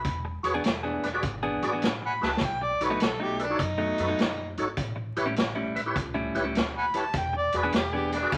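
A mellow, overdriven harmonica takes a laid-back, gritty solo with scooped notes and tongue slaps over a 102 BPM electric blues shuffle moving through E7, B7 and A7, as a clean, picked electric guitar riff comes in at 0.2 s, a tonewheel organ through a slow rotary speaker supplies full accompaniment, a woody pizzicato upright bass holds the low end, and a saturated vintage drum kit with a tight kick plays a fill at 2.1 s, in a moderate studio reverb with vinyl crackle.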